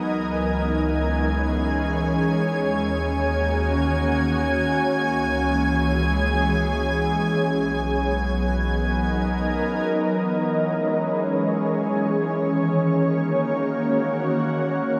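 In free time, this spacious, serene ambient excerpt in C# dorian drifts through C#m, D#m7 and Bmaj7 on an ethereal, airy pad whose slow-attack sustained chords, thickened by ensemble chorus and shimmer reverb, sit up front for the full 15.0 seconds. Beneath it a round, deep analog bass holds low notes, while a chamber violin section with light vibrato and a biting, earthy edge fades in high above with its own shimmer; both stop near 9.9 seconds, leaving the pad alone. A huge, wet reverb with a long tail bathes the whole space.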